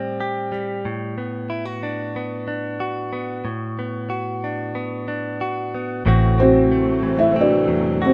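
A straight 4/4 pulse at 92 BPM carries this brief, melancholic folk fragment in A dorian, with a tuning reference of A4 = 445 Hz. A clean, compressed electric guitar, recorded direct and picked up front, holds the accompaniment throughout, moving from Am7 to a rootless Gmaj7 over A. A felt-muted upright piano carries the melody in a mellow, boxy voice, sounding only briefly before dropping out at 0.5 seconds. At 6.1 seconds the harmony settles onto Am69 as a lush, bowed string section enters with vibrato and portamento on sustained chords, joined by a round, punchy, foam-muted fingered electric bass anchoring a low A. The piano returns at 6.4 seconds, its thick felt tone intimate against the guitar, all set in a light reverb.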